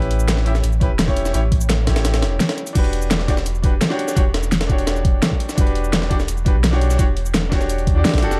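A dark production with light digital reverb frames this dreamy, soulful slice of liquid drum and bass, cut from a longer piece and moving at 170 BPM in straight 4/4 in E dorian. A round, sine-like sub bass sits up front from the start, deep and mellow with a fast attack and long sustained notes, while a clear, intimate baby grand piano plays accompaniment, its action noise audible and its long sustain trailing into a dub echo. The drums stack three kits. A gritty, compressed sampler-style breakbeat with a high-tuned snare and hi-hats is thinned by high-pass filtering. From 0.1 seconds an overdriven pop kit adds a fat snare, warm hats, cabasa and crash cymbal. At 0.8 seconds a knocking, overdriven electronic kick enters, and all three kits were re-recorded in a small room. The harmony moves from A9 to Em9 at 2.8 seconds, where the drop section begins again.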